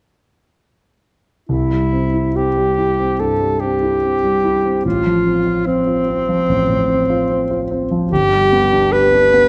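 A moderate recital hall reverb surrounds this short passage, cut from a longer classical piece for alto saxophone and grand piano in a tender, serene romantic style. At a rubato 73 BPM in 4/4 and C major, tuned to A4 = 439 Hz, both instruments enter together at 1.5 seconds and play through 9.5 seconds. The bright alto saxophone carries the melody up front in a classical manner, with light vibrato, staying within the range of C4 to B4. Beneath it, a dark concert grand piano plays the accompaniment from G1 to G4, also up front, with a mellow, intimate, vintage character, deep bass and audible action noise. The harmony moves from C to F/A and then to G, giving the passage a calm, unhurried flow.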